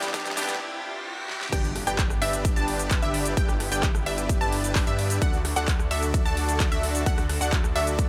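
Festival progressive house at 130 BPM in G major, this uplifting, anthemic passage, cut from a longer piece, opens on a short build-up where a clean, picked semi-hollow electric guitar sounds very quietly for the first 0.6 seconds beneath a warbling, vintage unison pad with chorus and sidechain pumping. A huge, thick supersaw riff with dub echo rides on top from the start, while a big-room drum kit with a huge snare, metallic hats, handclaps, shaker and rim click plays a fill. An up-front, punchy kick with overdrive comes in at 0.1 seconds, and a riser in the background carries the tension through a brief break. At 1.5 seconds the drop lands with an impact, and a detuned saw bass enters, sounding saturated and chorused, with sidechain pumping. A bright, punchy unison pluck joins at the same moment with arpeggios drenched in dub echo and a filter sweep, high above the bass. The chords move from C to G at the drop and on to D at 5.2 seconds, all set in light digital reverb.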